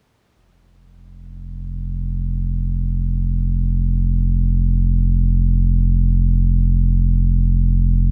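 A deep, round sine sub bass sits up front and sustains on a low F from 0.4 to 8.1 seconds, fading in across that span in this mysterious, hypnotic ambient fragment in free time, tuned to A4 = 441 Hz, set in a small, dry room and cut from a longer piece.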